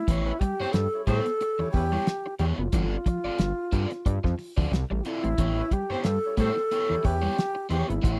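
Funk with a gritty, lightly swung groove, built on a close, dry 1970s-style studio sound, where an airy wooden-headed alto flute carries the melody over a dark clean electric guitar riff, a crunchy overdriven guitar with phaser, a fat, detuned analog bass with a filter sweep, and a cloth-damped, thuddy drum kit with a fat snare and tight kick, while a distant, punchy horn section with slapback echo adds a second line from 0.3 to 7.2 seconds.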